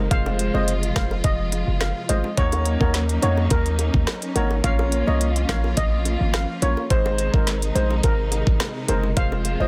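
Dancehall in Bb minor at 106 BPM, this sultry, tough excerpt moves in a straight 4/4 through Fm, Ebm7, Bbm and Ab. An electronic afro-pop drum kit sits up front with a knocking kick, woody snare, rim click and crisp hats, tape-warm and re-recorded in a small room, beside a deep, boomy 808-style bass with a sine body, noise layer and fast, decaying attack. A mellow steel pan, played double seconds with soft rubber sticks, carries a shimmering metallic melody through a digital delay, while a grand piano with long sustain and a bowed studio string section holding sustained chords, with vibrato, portamento and a smooth top, both breathe with sidechain pumping. Tight, high-tuned bongos under soft hands enter at 0.3 seconds, sitting very quiet in the mix. The whole is wrapped in small room ambience and a dense, heavily limited modern master.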